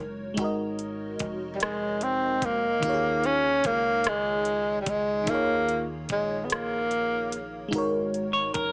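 A breathy tenor saxophone carries the melody up front in this yearning, late-night R&B fragment, its jazz-style line full of vibrato and scooped notes, entering at 1.6 seconds and ending by 7.4 seconds. Underneath, a lush, dreamy FM electric piano layered with a soft pad and a faint noise texture holds the harmony throughout, its detuned tones treated with chorus and phaser as the chords move from Ab9sus4 to Eb9sus4 and back in Eb minor. A deep, round, punchy dub bass played with the fingers sits low and dark, while an electronic drum kit with a knocking kick, metallic hi-hats and rim clicks comes in at 0.4 seconds. A clean, picked electric guitar with harmonic tremolo adds brief second-line touches at the very start and again near 8.3 seconds. The slow six-eight groove at 49 BPM feels straight and unhurried, wrapped in light reverb and digital ambience with a small-speaker character, and the clip is cut from a longer piece.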